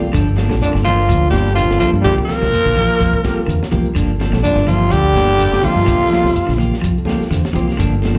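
Over a 125 BPM afrobeat groove with a light sixteenth-note swing, a tight, dry funk drum kit with a high-tuned snare, a round, dark fingered bass up front, a grainy shekere and thick-skinned congas drive this intense fragment between Gm9 and C7sus4, as a warm, very quiet electric guitar plays stabs through spring reverb, a second, twangy clean guitar picks low arpeggios and a reedy electric piano with fast tremolo and slapback echo adds a fill at 7.1 seconds, while from 0.6 to 6.6 seconds a raspy, gritty tenor saxophone with scooped notes leads up front, backed by a punchy bass trombone and a very quiet, smooth-topped trombone, all heard in a small club room as if through a venue's PA.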